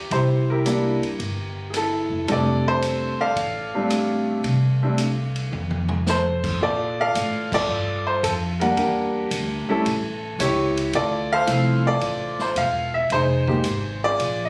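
Caught on a phone in a club-like room with light reverb and compression, this playful, relaxed jazz piano trio fragment swings at 111 BPM in F major, with a clear, open baby grand piano carrying the melody up front with long sustain over a woody pizzicato upright bass and a swinging big-band drum kit with a punchy kick, ride, hi-hat, snare, toms, rim click and crash; a drum fill at 5.5 seconds leads into a new section at 6.6 seconds, where the harmony moves from Bbmaj7 toward Dm9, and a band accent lands at 7.4 seconds.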